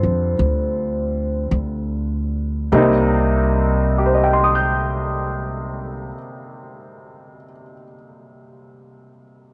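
A light studio reverb gives this short excerpt of a wistful, intimate jazz ballad a gentle sense of space around its close, up-front instruments. It sits in C minor at a slow 48-57 BPM in 4/4 with a swung eighth-note feel, tuned to A4 = 436 Hz, and it slows down through its opening seconds as the harmony moves from G7sus4 to Cm7. A vibraphone played with medium hard mallets carries the melody on a single ringing, metallic and airy C5 touched with medium motor vibrato, stopping at 1.5 seconds. A clear, open and slightly detuned upright piano supplies the accompaniment across a broad span from C3 to G6 and continues to 9.5 seconds. Underneath, a woody acoustic upright bass with steel strings plays pizzicato between C2 and F2 until 6.1 seconds.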